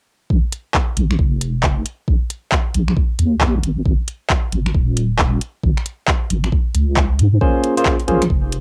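Skippy and late-night, this brief cut from a longer two-step UK garage track swings its sixteenths over a deep, soft wobble bass with a dark, warm sine-like tone, chorus and tube saturation sitting up front from 0.3 s. An electronic knocking kick and a garage kit of finger snaps, handclaps and metallic hats carry a cassette-tape grit and a small-room closeness, with little reverb around them and a home-recorded feel. Near the end, at 7.4 s, a bright, barky tine electric piano lands a clean Bbm9 stab through a combo amp, coloured by phaser and tape echo.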